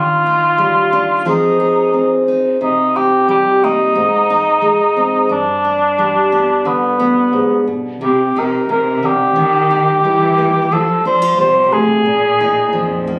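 Folk in C minor at 89 BPM, heartbroken and reflective, where a dark, vintage-toned cor anglais sings the melody up front with vibrato and soft attack over fingerpicked steel-string acoustic guitar, joined at 8.0 seconds by a distant bowed cello bass with vibrato and portamento, all in a small club-like room captured on a phone.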